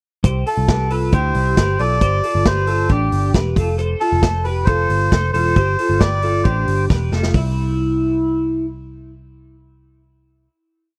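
Jangly indie pop at 135 BPM in C major with a nostalgic, youthful mood: a bright, twangy twelve-string electric guitar rings out picked arpeggios doubled in thirds through a lush chorus, over a dark, foam-muted vintage bass playing a round, melodic line and a tight, rolled-off vintage drum kit driving a dance-floor beat with off-beat open hats, while a reedy, breathy melodica states hook phrases until a drum fill at 6.9 seconds leads into a final C chord at 7.3 seconds that the bass carries to 10.5 seconds, in a dry, close 1970s-style small-room sound.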